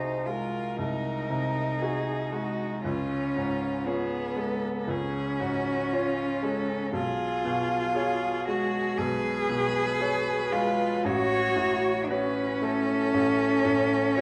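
Heard through worn, warbling cassette tape and the wet reverb of a recital hall, this fragment of a slow, rubato romantic movement for piano trio feels melancholic and yearning, with a rich, smooth violin singing the melody in close, even vibrato while an intense, clear cello carries a second line up front, joined by a bright, brilliant baby grand piano's open accompaniment.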